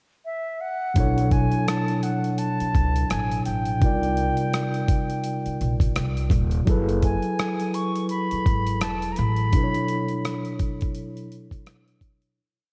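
Lo-fi hip hop at 84 BPM in 4/4 with a swung sixteenth-note feel, this short, complete piece carries a reflective, melancholic mood through a dreamy mix soaked in lush hall reverb. A concert flute opens at 0.3 seconds with a pure, straight-toned, tongued melody built from short call phrases, and it sings until 10.6 seconds. A tine electric piano, clean and up front with a cassette-tape character, holds spread-voiced chords with grace notes, repeating like a sampled loop through Bm11, Cm11 and F#m11. Beneath it, a woody, dark upright bass plucks a sparse line on gut strings, with muted ghost notes and slides. A gritty, compressed sampler-style drum kit lays down a laid-back beat of thumpy kick, rim clicks and sixteenth-note hi-hats. At 9.5 seconds the bass drops out for a break, and the piece fades out over the final seconds as the piano and drums carry it to the close at 12.4 seconds.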